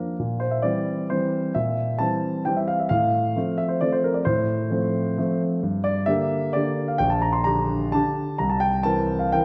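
In a 3/4 at 132 BPM, with uneven beats and free rubato, this playful, graceful classical piano waltz in F major is a short passage cut from a longer piece. A solo grand piano, polished and up front, spans from Bb1 to C6 over harmonies moving from C7/Bb through F/A and Gm to C7 at 8.4 seconds. A wet recital hall reverb and a dark, warm production lend the playing a warm glow.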